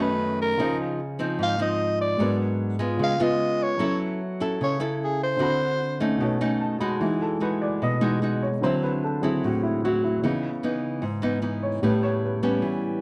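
A straight 4/4 bossa nova groove at 149 BPM carries this sophisticated, sunny passage, where a raspy, growling soprano saxophone with light vibrato and a smooth top leads the melody up front until 6.2 s, while a small, fingerpicked nylon-string guitar and a mellow, intimate baby grand piano with audible action noise and short sustain accompany throughout; the piano then slips in a fill and takes its own solo from 7.0 s as the harmony settles into E major, set in a dark, warm production with moderate studio reverb.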